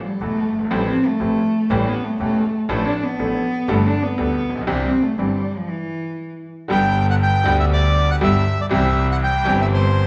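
This tango, cut from a longer piece, moves with a passionate, nostalgic rubato feel in 4/4. A warm, bowed cello carries the second line up front with vibrato and expressive portamento, though it sits at a distance in the hall. A bright, brilliant concert grand piano with a worn character and deep bass provides the accompaniment, and a clear, intense bowed double bass with vibrato and a smooth top anchors the low end. After a stop from 5.7 seconds and the cello's exit at 6.4 seconds, a reedy, dark bandoneon takes the melody at 6.7 seconds, close-miked, dry and full at the front of the mix. Rich chords such as Fadd9/A and Gadd9 give way to plainer G and C harmony in the later section, all set in a recital hall with a wet reverb tail.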